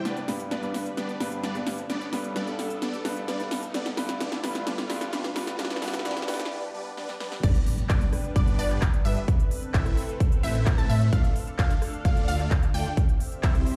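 A straight 4/4 pulse at 130 BPM drives this uplifting, anthemic festival progressive house passage, cut from a longer piece: an overdriven big-room drum kit with punchy snare, crisp hats, handclaps, rim clicks and crash builds with fills beneath a huge, bright supersaw riff, a lush chorused pad in the background and a clear, intimate grand piano with audible action noise, while a very quiet riser and impact sit underneath. After a brief break, the drop lands at 7.4 seconds, bringing in a punchy, up-front overdriven electronic kick, a thick, mellow detuned saw bass and a decaying, phased unison pluck playing arpeggios with a cassette-tape tint. Sidechain pumping shapes the synths and piano, while dub echo trails the riff, piano and pluck, and the whole mix sounds as if played on a big sound system in a bare room with large studio reverb, moving through G, Asus2, Dm and C.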